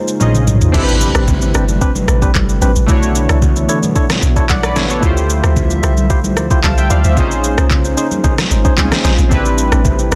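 Amapiano at 112 BPM in 4/4 with a straight feel, this late-night, hypnotic excerpt opens with a brief drum fill over a fat, saturated analog bass note that lasts only until 0.7 seconds. From there a deep, round FM log drum bass carries the low end with dark, percussive notes that decay quickly, while a very quiet electronic impact sounds at the start of the main section. The smooth R&B drum kit sits up front, with a soft kick, deep snare, handclaps, rim clicks, shaker, toms and crash cymbal. Distant, ringing congas played with soft hands sit in the background in a large room. Vintage, warbling analog keys with a filter sweep and chorus play the accompaniment above a hollow, flute-like pad whose slow-attack chords pump with the sidechain, and a mellow, organ-like stab with chorus and delay enters at 1.1 seconds. Minor eleventh chords such as Bbm11, Am11, Bm11 and Dm11 shift underneath in a dense, heavily limited modern master with little reverb.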